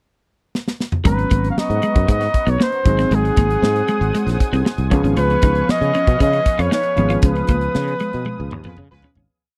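Upbeat and glossy, this polished 1980s jazz-funk pop piece opens with a drum fill before a clear, scooped flugelhorn melody floats over a crisp sixteenth-note kit groove, a growly fretless bass line with muted ghost notes, a compressed, muted semi-hollow guitar line, held piano chords with audible action noise and a thick, warbling sawtooth pad, all in a dry, close recording, until a distant horn section punches in at 8.6 seconds during the fade-out.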